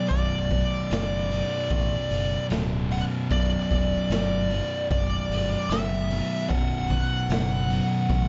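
A fuzz lead guitar sits up front, its picked, distorted melody coloured by wah and analog delay and holding to a narrow upper range over a single B minor chord. This short stoner and doom metal fragment, cut from a longer piece, has a brooding, hypnotic mood and a straight 4/4 pulse. Beneath it, two thick fuzz guitars grind out a dark, picked riff low in the register, one of them set further back in the mix. A growling fingered electric bass, overdriven with tube saturation, joins at 0.1 seconds alongside a raw garage drum kit whose boomy kick, medium-tuned snare and hi-hat carry a gritty, pumping small-room character with a rolled-off top. The production is dark and warm under light reverb, keeping the whole 8.3 seconds thick and low-lit.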